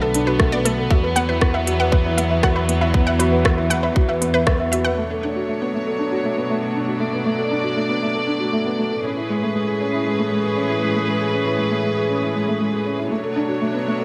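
Hypnotic and melancholic, this piano and strings electronica excerpt sets a soft, muted felt upright piano riff with delay up front over sul tasto chamber strings holding sustained chords, while for the first 4.9 seconds a round, detuned analog pluck spins pumping arpeggios, a bowed double bass section adds clear, vibrato-rich low lines, and an overdriven electronic kit with crisp hats, rim clicks and a tight, forward kick drives toward a band accent at 4.5 seconds before the piano and strings carry on alone in an echo chamber reverb.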